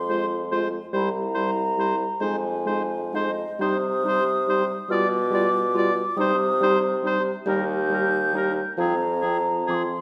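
A slow, rubato 6/8 at 46 BPM (dotted quarters) carries this yearning, elegiac romantic movement for wind quintet, which settles into C minor from 3.6 s. A hollow, wooden flute sings the melody high above a mellow, up-front bassoon bass, while an oboe with vibrato shapes a second line. A lightly vibrating French horn and a distant clarinet fill in the accompaniment, all blooming in a wet recital-hall reverb.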